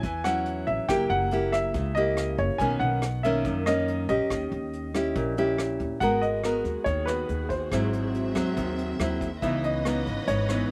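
A bright, full-bodied fingerpicked nylon-string guitar sits up front in this smooth, melancholic bossa nova excerpt in G# minor at 141 BPM, alongside a warm baby grand piano carrying the melody, woody pizzicato upright bass, and a dark, rolled-off brush kit with punchy kick, hi-hat and rim click, while a lush, bowed symphonic string section with soft attack and vibrato enters at 6.0 seconds over jazzy chords such as F#7b9, Bmaj9 and G#m9, all in a dry outdoor sound.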